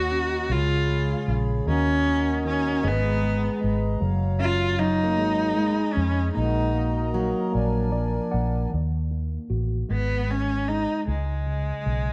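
Acoustic folk-pop ballad in a straight 6/8, reflective and heartbroken, where a rich bowed cello with vibrato carries the melody up front over a round, punchy, foam-muted electric bass, a worn, slightly out-of-tune tine electric piano, and a reedy, breathing pedal harmonium holding sustained chords until 8.7 seconds, while a boxy picked parlour steel-string acoustic guitar plays arpeggios in the background from 2.8 to 7.9 seconds, set in light reverb.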